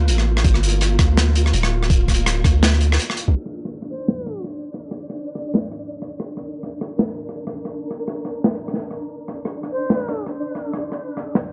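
Dry, gritty and dark-edged, this tense, cinematic half-time drum and bass fragment opens with a deep, mellow 808-style bass and an overdriven, knocking electronic kick beneath a crunchy, saturated breakbeat kit with dark cymbals and rim clicks; the kick drops out at 2.6 seconds and the bass ends at 3.3 seconds as a filter sweep begins, while a flickering, grainy, detuned texture hovers throughout and a distant, pure silver flute with vibrato and tape echo surfaces twice on a brief C5.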